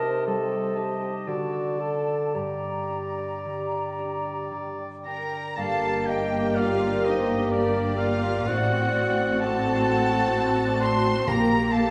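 A rich chamber violin section carries the tender, lyrical melody from 5.0 seconds, its bowed vibrato smooth and even, with a second, very quiet violin line beneath it. From the start, a clear oboe, an airy, close-miked flute group, a clarinet, a mellow bassoon and a ringing, fingerpicked harp spin the opening of this rubato classical excerpt in three-time, and from 5.6 seconds lush violas, tight French horn chords, distant double basses and woody cellos fill out the orchestra in a reverberant scoring-stage space. Round, soft-mallet timpani enter at 11.3 seconds as the passage closes.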